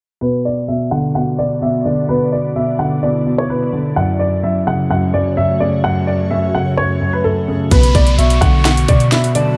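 Dark, melancholic trap at 128 BPM in a half-time feel, in B minor, this excerpt opens with two dark, up-front grand pianos, a worn, boxy one carrying the melody over a deep, smooth one playing the accompaniment, both low-pass filtered and steeped in dub echo under a filter sweep, while an ethereal, detuned pad enters at 1.3 seconds with chorus, phaser and reverb. At 7.7 seconds the piece shifts as a boomy 808 bass, a trap kit with hard-clipped kick, sharp snare and metallic hats, a downlifter, and a breathy flute line with vibrato and dub echo all arrive together. The chords move from Bm to F#m and back to Bm in an echo-heavy mix with light reverb.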